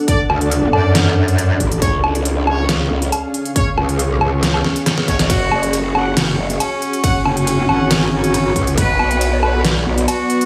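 A metallic, overdriven wobble bass dominates this heavy, aggressive half-time dubstep excerpt, joined at 1.8 seconds by a growling chorus-soaked bass and backed by punchy electronic kicks, a deep-snared drum kit with crisp hats, ride and woodblock, bright brass stabs with dub echo, a pumping supersaw pad and a faint granular cloud, before a reedy, gut-string cello with 12-bit sampler grit takes the melody at 5.3 seconds after a drum fill.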